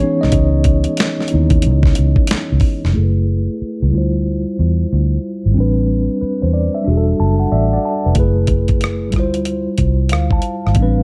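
A swung 92 BPM groove in 4/4 sets up this late-night, smooth neo-soul and R&B excerpt, with a gritty, compressed sampler-style kit (thumpy kick, medium-tuned snare, rim click and hi-hat) and a dark, round, foam-muted fingered electric bass sitting up front beneath a mellow, clean tine electric piano heard through its built-in speakers. The drums drop out at 2.9 seconds as a filter sweep begins on the low-pass-filtered electric piano, which moves through lush minor chords from C#m9 to F#m11, Dm11, Am11 and Em11 and plays a fill just before the kit returns at 8.2 seconds. The production is dusky and warm, with light reverb.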